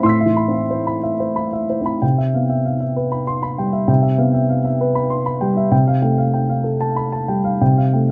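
Peaceful and tender, this short fragment of neoclassical minimalist piano features a solo upright piano, mellow, woody and set up front in light reverb, drifting in a rubato three-four feel from an Amadd9 chord through Cmaj7 at 2.0 seconds to Fadd9/C at 5.7 seconds, all within a dark production.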